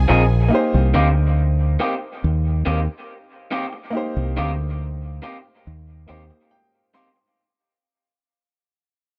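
Bittersweet and longing, this short reggae passage from a longer piece opens with a lush, bowed string section with vibrato and dub echo in the background that stops at 0.5 seconds. It leaves a round, dark fingered electric bass, slightly broken-up, lo-fi guitar stabs with dub echo, and a clear, short-sustained baby grand piano accompaniment up front, and the piano adds a fill from 6.1 seconds as the dry-sounding music fades out.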